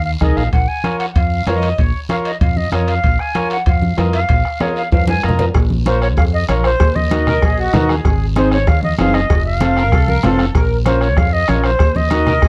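A dark, lightly reverberant production frames this passionate, danceable cumbia fragment, with an airy silver concert flute carrying the melody up front through a slapback echo over a round, deep fingered electric bass and a vintage, clean combo organ. Beneath them a soft-beaten bombo, bright close congas, a raspy guiro and ringing, saturated timbales and cowbell set in the background drive the groove, with a drum fill leading into the second section. A sweet, reedy accordion with light tremolo tuning adds a second line, briefly at 1.5 seconds and then from 7.3 seconds to the end.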